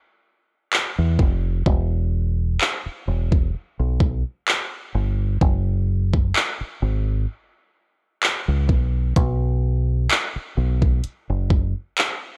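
Tender and smooth, this short contemporary R&B excerpt moves at an unhurried pace with a light swing, cut from a longer piece. An up-front electronic drum kit enters at 0.7 seconds with a knocking kick, warm hi-hats and handclaps, re-recorded in a small room, while a dark, round fingered electric bass joins at 1.0 seconds, deep and direct in the low register. The dry sound carries the worn, warbling pitch drift of old cassette tape.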